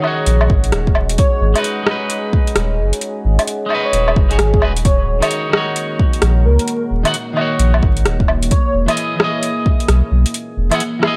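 Vinyl crackle opens this nocturnal, melancholic future garage excerpt alongside a bright, clean picked electric guitar with 12-bit sampler grit and tape echo, a dark, detuned ambient pad with chorus and built-in reverb, and an overdriven deep house kit of metallic hi-hats, rim clicks and woodblock; a round sine sub bass with sidechain pumping arrives at 0.3 s, a deep overdriven electronic kick sits up front from 0.5 s, and an airy, dreamy lead with chorus, vibrato and tape echo floats over the swung groove from 1.2 s, all in a lightly reverberant room as the chords move from Ebm7 to Abm7 and back to Ebm7 before landing on Emaj7.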